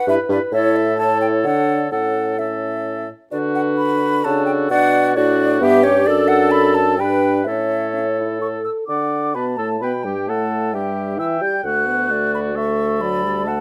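A moderate studio reverb gives this short excerpt from a longer wind quintet piece a clean, room-sized sound. It is a quick, spirited classical-period movement in D major and 3/4 at 130 BPM, with a cheerful, straight feel. The silver concert flute carries the melody with a hollow, airy tone and vibrato, set above a mellow clarinet and a close-miked French horn with a soft attack, both playing accompaniment. The oboe adds a second line with light vibrato and a smooth top, while the bassoon sits up front on the bass. The opening section runs to 8.9 seconds, where a contrasting section begins and carries the music to its close at 13.6 seconds.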